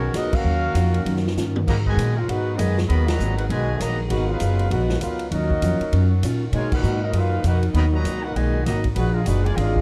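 A dark, lightly reverberant big-band swing excerpt in Eb minor at 197 BPM, where a mellow, distant trumpet section carries the melody over a clear trombone second line, background saxophone chords, a picked steel-string acoustic guitar with finger squeak, a woody up-front pizzicato upright bass and a swinging drum kit with a punchy kick that joins at 0.1 s, the band hitting accents at 0.3, 3.0 and 6.7 s as the chords move from Ebm9 through Abm9 and Bmaj7 to a closing Bb7.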